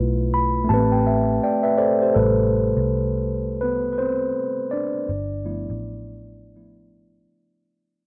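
A mellow, clean tine electric piano and a round, foam-muted electric bass open this nostalgic, reflective lo-fi hip hop excerpt together. The piano begins with a fill on a rootless G13 before settling onto Am9, its tone coming through built-in speakers and sitting up front. The vintage picked bass stays low and punchy beneath it, also up front, with an amped, dark character. At 2.2 seconds the piano moves into a solo as the whole passage begins to fade out, swaying over a swung sixteenth-note feel and returning to G13 at 5.1 seconds. The bass drops away at 7.2 seconds, leaving the piano alone, while a moderate spring reverb and a warm, shadowy production give the piece its reflective air.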